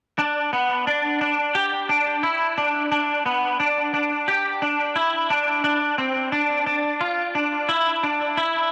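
A clean electric guitar opens this short, hazy and melancholic dream pop excerpt at 88 BPM, sitting up front with a picked, twangy, compressed tone as it plays arpeggios from 0.2 to 8.7 seconds through ensemble chorus and tape echo, all set in light reverb on a dry, gritty hardware recording.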